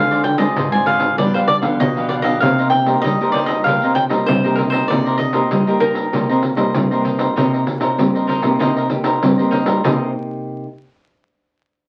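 A crisp, up-front cavaquinho melody opens this bittersweet, yearning samba and choro fragment in C minor at 97 BPM, over a second, picked cavaquinho, a fingerpicked classical nylon-string guitar, and a small, thumb-plucked guitar bass line, with a jingly, band-limited pandeiro entering at 0.1 s. The harmony moves through Dm7b5, G7 and Cm7. The melody ends at 7.0 s, leaving the bright accompaniment to carry on, all heard through a wet studio ambience and the crackle of a very old 78 rpm record.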